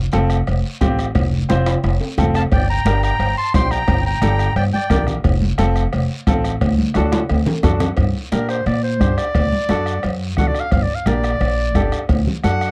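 A dry, close studio sound with a 1970s character frames this fiery, danceable cumbia excerpt at 176 BPM in G minor, turning to G harmonic minor at 8.0 seconds. A woody, thumpy pizzicato upright bass sits up front over a bright, polished upright piano, while a distant bombo with a soft beater, thick-skinned congas played with soft hands, ringing vintage cowbell and timbales, and a raspy, saturated guiro fill out the percussion. A clear, close-miked clarinet carries the melody in a classical style at 2.4 seconds, shadowed by a reedy, shimmering musette accordion until 5.1 seconds. Drum fills mark the turns, and the chords move from F to G minor and D before the clarinet returns at 8.3 seconds for a solo over alternating G minor and D. The piece is cut from a longer performance.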